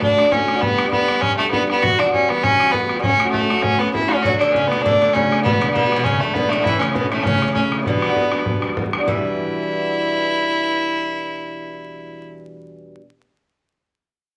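Driving and spirited, this Celtic reel in E dorian runs at 199 BPM with a light swing and is cut from a longer piece. A clear, airy fiddle carries the melody up front over a dark, boxy picked acoustic guitar and a boomy, distant bodhran, and a bright, metallic Irish bouzouki joins with a second line at 4.3 seconds. The bodhran drops out at 9.2 seconds as the tune moves into its second section, all set in a wet club reverb with vinyl crackle.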